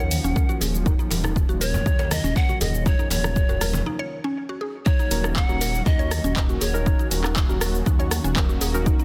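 A dense, heavily limited and nearly dry mix carries this hypnotic afro house cut, where an overdriven, up-front electronic kick and an afro-pop kit of handclaps, dark hi-hats, rim clicks and shaker drive a deep, rumbling detuned saw bass that pumps against the kick. A breathy, reedy bamboo pan flute sings the melody with vibrato and dub echo over a smooth, chorused analog pad on Ebm7 and woody, mallet-like FM pluck arpeggios treated with phaser and echo, while thick-skinned congas and a tight, cracking djembe add hand percussion in the background until 3.8 seconds. After a brief break, the drop lands at 4.9 seconds, and warm, round analog key stabs with chorus and dub echo join at 5.1 seconds.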